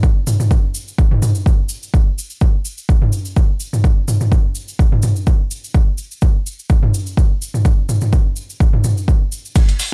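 This gritty, driving house excerpt is built entirely from percussion with a lightly swung feel: an analog electronic kick drum and a punchy analog drum machine, with crash cymbal, hi-hat and toms, sit up front, re-recorded in a small room. A grainy, bright cabasa sounds distant in a larger space behind them, and a very quiet acoustic ride cymbal enters only at 9.6 seconds. The production is dark and warm, with a small-room ambience.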